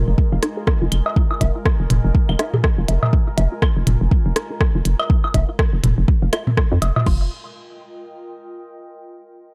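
A dry, close-sounding cut from a longer minimal techno piece, quirky and hypnotic, with a gentle swing in its sixteenths. A hollow, bouncy FM bass knocks up front alongside a deep, overdriven kick and crash, while clicky, overdriven hi-hats and rim clicks tick just behind them. Electronic claves, woodblock and toms, re-recorded in a small room and trailed by digital delay, scatter over the groove. Further back, a juicy, squelchy resonant pluck runs a riff through phaser, analog chorus and delay, a bubbling texture steps through random filter moves, and a nostalgic, lo-fi pad warbles with chorus and phaser; all of these pump against the kick. The harmony holds on Fm7 before shifting to F9sus4 at 7.1 seconds, and the pad, fading through the opening section, outlasts the other parts and rings on until 9.0 seconds.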